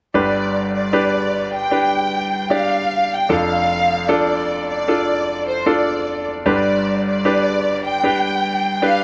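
Hopeful and emotional, this short pop excerpt moves at an unhurried 76 BPM in a straight 4/4, centred on G mixolydian and tuned slightly high at A4 = 441 Hz. A bright grand piano carries the accompaniment from 0.1 s, its brilliant, polished tone sitting up front with short sustain across a span from F1 to D5. Just after, at 0.2 s, a warm studio violin section takes the melody between C5 and G5, bowed with vibrato and a soft attack for a lush, expressive ensemble sound with a distant quality. The harmony shifts from G to F6 at 3.3 s and returns to G at 6.5 s, all within a single section cut from a longer piece. A moderate plate reverb with a 3.4-second tail gives the whole mix a spacious sheen that heightens its hopeful, emotional character.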